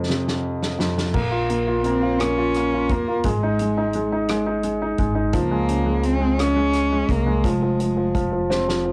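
A home cassette recording with a modest booth ambience frames this romantic, heartfelt six-eight pop ballad, cut from a longer piece and moving at 57 BPM in 6/8. A clear, up-front concert grand piano with deep bass opens at 0.0 s, joined at 0.1 s by an acoustic drum kit with a punchy kick, medium-tuned snare, hi-hat, rim click and crash, which plays a fill before a woody, thumpy pizzicato upright bass on gut strings arrives at 1.1 s. From 1.2 s a close, bowed single cello carries the melody with vibrato, portamento and a soft attack over chords moving from Bbm through Ab and Db to Fm, with another drum fill at 8.5 s.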